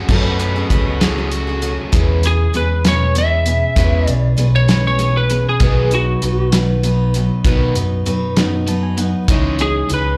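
Picked steel-string acoustic guitar and a double-tracked overdriven electric guitar riff open this hopeful, open-road folk and heartland rock piece in 6/8, joined by a brief fingered slide guitar line, a reedy electric piano in the background that adds a fill at 8.4 seconds, a dark, round bass and a thuddy, cloth-damped drum kit up front, before a twangy, slightly broken-up lead guitar takes a solo from 1.9 seconds, all heard as a live club gig through the venue's PA with slapback echo on the guitars and piano.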